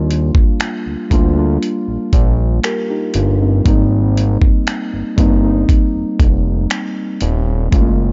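Dreamy and tender, this short contemporary R&B excerpt moves at a slow 59 BPM in a straight 4/4, drifting from Ebmaj9 to Abmaj9 at 3.7 seconds. Muted, felt-like synth keys with a soft, warbling chorus sit over a fat, nasal analog bass that sustains thick, saturated low notes. A dusty sampler-style kit of finger snaps, hi-hat and a thumpy kick adds gritty, compressed vintage texture, all within a dry, dark production that keeps every part up close.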